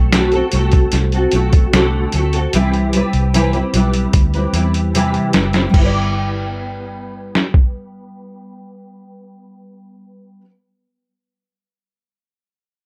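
A relaxed, straight 4/4 groove at 75 BPM sets up this laid-back, sunny snippet of indie bedroom pop in G major, drawn from a longer piece. Up front, a lo-fi sampler-style drum kit gives a thumpy kick, a medium-tuned snare, hi-hat and crash cymbal, sounding compressed, pitched down, muffled and overdriven, as if re-recorded in a small room, with a drum fill running from 2.5 s to 5.7 s before the kit drops out at 7.7 s. A bright, full-bodied nylon-string guitar, also up front, is fingerpicked with a deep classical tone and fresh strings, and an ensemble chorus and warbly pitch drift give it a gently wobbling haze. Underneath, a vintage muted fingered electric bass sits low, dark and round, its amped, foam-muted notes staying deep in the bottom range. The harmony moves from D7 to Cmaj7 and settles on G6 as a new section begins at 5.7 s, all of it softened by a light reverb.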